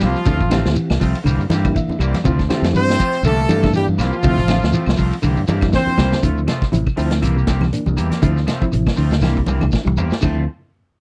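Driving and funky, this afrobeat excerpt rides a swung sixteenth-note feel over a chord vamp that alternates between Dm7 and C7. A bright, tightly doubled horn section carries the melody up front in the opening stretch, with a raspy, gritty alto saxophone adding a second line in the background until both stop at 6.2 seconds. A round, dark fingered electric bass anchors the groove near the front, while a clean semi-hollow guitar plays arpeggios in the background and a twangy electric guitar at the edge of break-up adds stabs through a subtle chorus. A reedy, worn, slightly out-of-tune electric piano with fast tremolo supplies accompaniment through its built-in speakers and plays a short fill early on. A vintage kit with dark cymbals and a tight kick drives the beat and plays two fills, one leading into the second part and another near its close, supported by grainy shekere, very quiet woody claves and low-tuned, thick-skinned congas. 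The sound is dry and close, in the manner of a 1970s studio recording.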